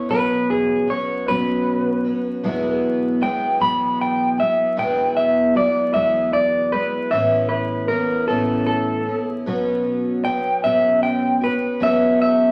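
In a slow, straight 6/8 at 51 BPM, counted in dotted quarters, this nostalgic, open-road rock excerpt in E major (tuned to A4 = 436 Hz) rests on a picked twelve-string acoustic guitar whose fresh strings give a shimmering, octave-doubled accompaniment through Bsus2, Eadd9 and Aadd9 chords. Up front, an electric guitar through a small old amp plays a clean solo melody across the full 12.5 seconds, its tone dark and slightly broken-up. A large studio reverb adds a wet sense of space, and vinyl crackle lends the recording an aged patina.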